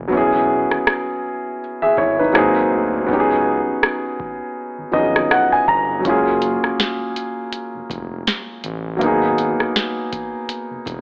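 An intimate grand piano sits up front in this short slice of contemporary R&B. Its natural tone carries audible action noise as it accompanies, then plays a fill from 4.6 to 6.0 seconds to close an opening break. The mood is romantic and tender, at 81 BPM in 4/4 with a swung 16th-note feel, in F# major. Underneath, a smooth synth bass sits low in the mix, blending sawtooth and triangle waves with wave-folding, and its fast-attack, sustained notes are shaded by vibrato and portamento glides. A booming analog drum machine, also up front, brings a deep kick, crisp snare, metallic hats and rim clicks with a tape-warm character. The harmony moves through E6, G#7, C#9sus4, F#maj7 and G#m7, and the recording has a dry, gritty hardware quality with cassette tape and AM radio coloring, set in a digital ambience.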